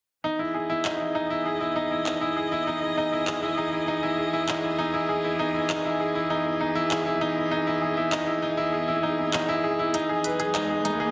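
Luminous and hopeful, this piano and strings electronica excerpt at 99 BPM in E major builds throughout, as a clear, intimate baby grand riff with audible action noise sits up front with delay, a rich, distant string quartet holds bowed chords with vibrato under a filter sweep, and a produced electronic kit adds handclaps and crisp hats from 0.8 s, with the harmony moving from Emaj7 to G#m/E at 9.9 s and a background riser entering at 10.4 s inside a moderate echo-chamber reverb.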